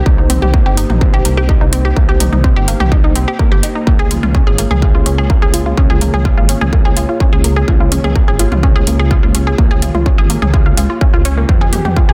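A dense, heavily limited modern master with light reverb frames this dark, dramatic stretch of melodic techno, cut from a longer piece. Up front, a distorted, layered electronic kick drives a straight pulse, joined from 0.3 seconds by a techno kit of metallic hi-hats and toms. Underneath, a deep, rumbling detuned saw bass sustains with a beating, sawtooth-and-sine edge, pumping against the kick. A lush, punchy unison pluck spins arpeggios through a digital delay, its filter-plucked notes carrying a noise layer and a ring-modulated bite. Further back, a moody analog pad of square, saw and triangle waves with a sub octave holds slow-attack chords under chorus and a moving notch, breathing with sidechain pumping as the harmony shifts from Cm7 to Bbm7 at 3.9 seconds and reaches Fmadd9 at 11.5 seconds.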